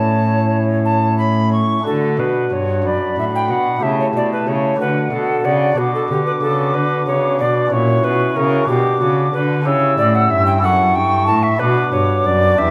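Classical baroque-style sonata movement with continuo in D major, a flowing, dance-like 6/8 at 62 dotted-quarter beats per minute, where an airy, chiffy alto recorder carries the melody over a hollow concert flute's vibrato second line, soft flute stops on a pipe organ and a nasal, gut-strung bowed cello in a wet recital hall, the harmony moving from A through D to B minor and a C#dim before settling on B minor near 11.6 seconds in this cut from a longer piece.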